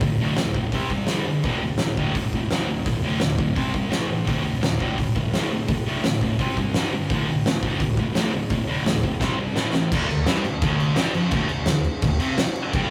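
A thick, double-tracked fuzz guitar drives a bright, picked power-chord riff over an oversized, low-tuned drum kit with a boomy kick and fat snare pumping in a big room in this raw, swaggering garage rock excerpt at 170 BPM, cycling through D5, C5, G5 and A5 until a drum fill at 9.2 seconds opens onto a chordless final stretch, all captured as a rough, tube-saturated rehearsal-room recording.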